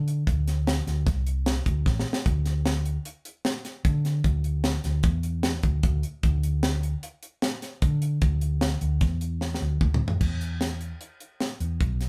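Progressive instrumental band music in 5/4 at 151 BPM, this short excerpt from a longer piece feels tense and driving with a straight pulse. A hollow-body short-scale electric bass, played with the fingers, carries the low end from the start, its amped tone dark and round as it moves between A1 and D3. A tight funk drum kit joins at 0.1 seconds, with a high-tuned snare, a tight kick, bright cymbals and toms, the kit sounding dry and acoustic. Both parts sit up front in the mix, heard as a band playing live together in one room with a wet studio ambience. Drum fills at 1.9 and 9.4 seconds punctuate the groove, the second leading into a new section at 10.2 seconds that runs to the end at 12.1 seconds.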